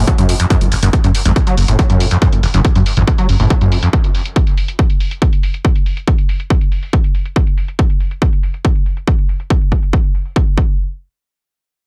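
A squelchy, gritty acid bass riff, distorted and coloured with lush chorus and tape echo, opens this intense, industrial peak-time techno cut at 140 BPM in F# harmonic minor, alongside a deep, rumbling detuned saw bass under a filter sweep, both pumping to the sidechain until they drop out by 3.9 seconds, while an up-front heavy kick and a low-pass-filtered electronic hi-hat, both overdriven, drive a straight 4/4 through 10.7 seconds in a dry, echo-heavy mix.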